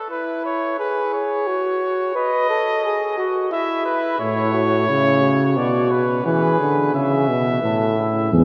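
In a straight 3/4 at 88 BPM, this lively, joyful classical canzona for brass ensemble moves in A major, cut from a longer piece. A clear trumpet with a smooth top and light vibrato carries the melody up front, while a mellow, roomier flugelhorn sets a second imitative line beneath it, set back at a distance. At 4.2 seconds a warm, close-miked trombone joins with a low accompaniment, and a distant tuba sounds a single bass note at 8.3 seconds, just as the passage closes. The harmony circles through E, B, A and B minor chords, and a wet cathedral reverb with a long 5.0-second tail casts a spacious, resonant glow around the ensemble.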